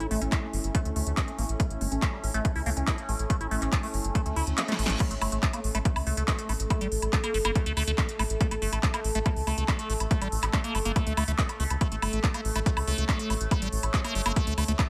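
Alien and hypnotic, this psychedelic trance excerpt at 141 BPM in A major rides a punchy, up-front electronic kick, a techno kit of crash, handclaps, smooth hats, snare and woodblock, a round, dark analog bass, a squelchy, resonant acid riff with phaser and dub echo, an overtone-sweeping drone holding sustained chords and a warbly, lo-fi tape-like pad that stops at 5.0 s, as a filter sweep on the acid bass, a reverse cymbal and zap, and a brief drum fill where the kick drops out lead into the drop at 5.0 s.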